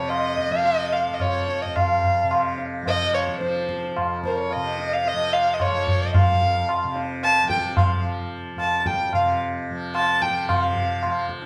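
A straight 4/4 pulse at 110 BPM from low-tuned, short-ringing, distant tabla carries this devotional, meditative Hindustani classical excerpt, where a mellow, buzzing, shimmering tanpura drone between F2 and F3 sits beneath a single up-front bowed violin whose dark, woody melody, sung with vibrato between Bb4 and A5 and bathed in plate reverb, is heard through close, detailed microphones in a moderate studio ambience.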